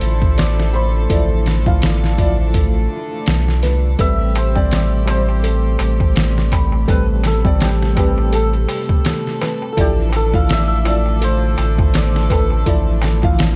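A shimmering, hammered santur carries the melody through 12-bit sampler grit and tape echo in this smoky, cinematic trip hop excerpt at 83 BPM, with a swung 16th-note feel, over a muffled, pitched-down sampler drum kit with a thumpy kick, a round sine sub bass up front, a felt-muted upright piano playing tremolo accompaniment, a second, gritty muted piano adding soft arpeggios in the background, and a rich, earthy chamber string section sustaining chords that move from Dmadd9/A to Am9 and back, while a crisp metal-shell darbuka enters quietly at 4.0 seconds.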